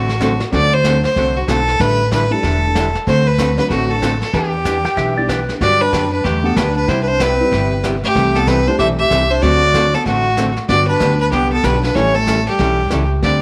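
A moderate echo-chamber reverb gives this cheerful, down-home western swing excerpt a roomy glow as it rolls along at 189 BPM with a swung feel. An up-front, clear fiddle carries the melody with light vibrato over a dark, picked hollow-body archtop guitar, a growly, thumpy pizzicato upright bass, a jangly, detuned honky-tonk piano and a brushed drum kit set in the background. A bright, twangy lap steel slips in briefly at 4.9 seconds with volume swells, and from 5.6 seconds a breathy, subtone clarinet adds a mellow jazz-style second line over chords moving from D7 through Gmaj9 and Cmaj7 to A7.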